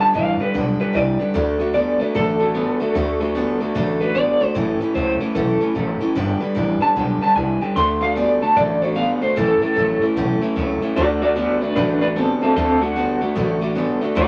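Upbeat and rollicking, this rockabilly piece, cut from a longer performance, swings along at 150 BPM in 4/4 with a lively shuffle on the eighth notes, in D major. A twangy electric guitar through a small old amp carries the melody up front, its warm, slightly broken-up tone shimmering with tremolo. A second amp-driven electric guitar, bright and slightly broken-up, plays a low riff beneath it, while a full-bodied dreadnought acoustic guitar picks the accompaniment. An upright bass, plucked pizzicato, anchors everything with a woody, dark bottom end. The chords cycle through G, D and A before settling on D, where a clean electric guitar solo begins at 11.0 s and runs to the end at 14.3 s. A moderate club reverb gives the whole band a lively, roomy sense of space.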